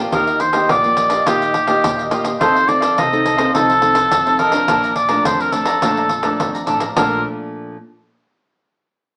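A solo oboe with a light vibrato and a vintage, classical tone sits up front and carries the tune in this sunny, festive samba and choro fragment, moving through Ebadd9, F7 and Bbmaj7. Crisp picked cavaquinho and a bright, fingerpicked nylon-string guitar fill in the harmony, while a jingly pandeiro sits close and dry and a woody, thumpy pizzicato upright bass stays in the background. The band sounds as if it is playing live in one room through a small speaker, bathed in wet reverb, and the guitar rings on alone until 7.8 seconds, after the other parts stop.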